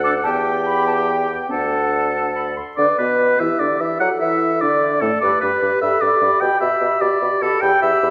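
Cheerful and graceful, this quick classical-period movement for wind quintet moves in 6/8 at 99 beats per minute, in G major with a rubato feel, and is cut from a longer piece. The oboe sits up front with the second line, its tone warm and smooth on top with vibrato, while the concert flute carries the melody from further back, pure and expressive with a soft attack. The clarinet's soft-edged accompaniment and the French horn's mellow, lightly vibrato-tinged support sound distant and roomy, and the horn enters at 0.1 seconds. Beneath them the bassoon supplies a mellow bass line with light vibrato. The harmony moves from E minor and D into G, and a second section begins at 2.8 seconds. The ensemble is wrapped in a wet hall reverb, and lossy compression artefacts colour the sound.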